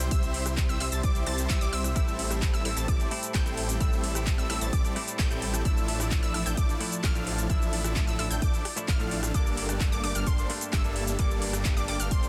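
A straight 4/4 groove at 130 BPM drives this powerful, anthemic festival progressive house excerpt in D minor, built on a punchy electronic kick sitting up front and a house kit of handclaps, metallic hi-hats, rim click and shaker, with sidechain pumping breathing through the melodic parts. A huge, euphoric supersaw lead carries the riff with delay over a thick, saturated detuned saw bass with chorus, while a bright unison pluck runs high arpeggios through cassette-tape colour and delay, and an airy pad holds sustained chords with chorus and phaser in the background. From 2.0 s a clean, twangy direct-recorded electric guitar joins softly in the background with lush chorus and delay, as the harmony moves from C through Am7, Dmadd9/A and Gmadd9 in a dense, heavily limited, dry mix.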